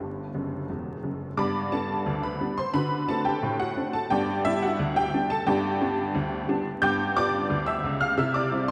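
A detuned, jangly honky-tonk upright piano opens this short, cheerful ragtime passage, cut from a longer piece and played alone in G major at 88 BPM in a straight 2/4. Its woody, vintage tone sits up front and natural, spanning from a deep E1 to a bright G6. A playful fill runs from 0.3 to 1.4 seconds, leading into a new section. The harmony then moves from G through D7 and back to G, turning to G7 and landing on C as the clip closes at 8.7 seconds. Around the piano hangs a long cathedral reverb that places it in a vast, echoing space, and a vinyl crackle lends the recording an old-record character.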